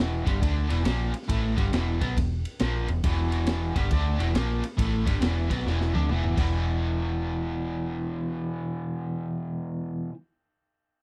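Heavy and gritty, this short blues rock and southern rock power-trio cut swings at 138 BPM in E minor, with a biting overdriven guitar riff pulsing through harmonic tremolo over a dark, round, foam-muted fingered bass, while a saturated garage drum kit with a punchy kick and medium-tuned snare drives the groove through a fill from 5.7 seconds before dropping out at 6.4 seconds, leaving guitar and bass to ring on an E5 in a dry, close 1970s-style studio sound.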